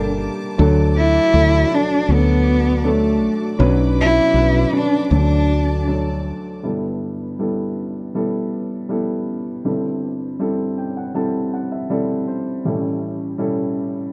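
Acoustic folk-pop ballad, heartfelt and hopeful, where an expressive bowed cello with vibrato and portamento carries the melody over a mellow, woody upright piano, a round fretless electric bass and soft sul tasto chamber strings until the cello stops at 5.8 seconds and the piano plays alone from 6.6 seconds to 14.1 seconds, all in a dark production with light reverb.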